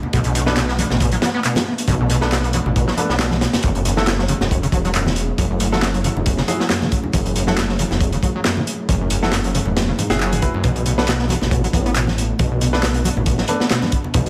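A crunchy, punchy breakbeat kit with swung 16ths drives this energetic, gritty 137 BPM breakbeat excerpt in F# minor, where tape-warm electronic handclaps and very quiet bright congas sit alongside a menacing, detuned saw bass, a squelchy, distorted acid riff with chorus, delay and a filter sweep, worn grand piano stabs in the background, and a dark, warbling, nostalgic pad on chords moving from Bm7 to F#m7, all set in an echo-heavy chamber-and-small-room mix.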